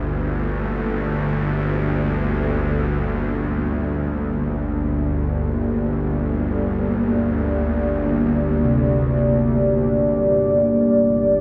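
A tense, string-like bowed drone sits up front on a low G in this ominous, desolate dark ambient excerpt in free time and G minor, tuned to A4 = 439 Hz, beneath a deep, detuned analog pad holding a sustained chord with chorus, while distant bronze gongs with delay ripple through arpeggios from 0.0 to 2.8 seconds and again from 8.6 seconds, all bathed in a cavernous cathedral reverb.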